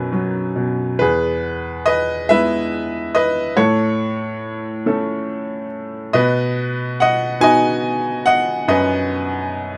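A bright upright piano carries this short classical fragment alone, its tone brilliant and woody and placed up front, close enough to catch natural detail in every note. The mood is peaceful and tender, a lyrical solo played with rubato at a slow 47 beats per minute in 6/8. Set in E major and spanning from E2 to G#5, the piece opens on a Bmaj7 chord before settling onto E at 1.0 seconds, then moves to A at 3.6 seconds and B at 6.1 seconds. A light reverb lends a gentle sense of space while the close microphones keep the instrument intimate. Cut from a longer piece, this passage lasts just under ten seconds.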